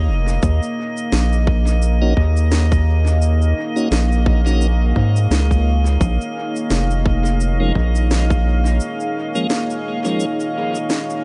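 A swung 86 BPM groove in 4/4 drives this spacious, deep ambient dub excerpt in Bb minor, built on a tight, overdriven electronic kick and a woody, overdriven electronic cabasa and snare trailing dub echo, under a round, up-front analog bass with a fast filter pluck. A moody, detuned sawtooth pad with chorus and reverb holds Ebm7 moving to Bbm7, while a calm, glassy harmonics texture drifts on Eb5. A piping, scooped tonewheel organ adds clean stabs through a slow rotary speaker from 2.0 s, and the bass drops out at 8.8 s for a break.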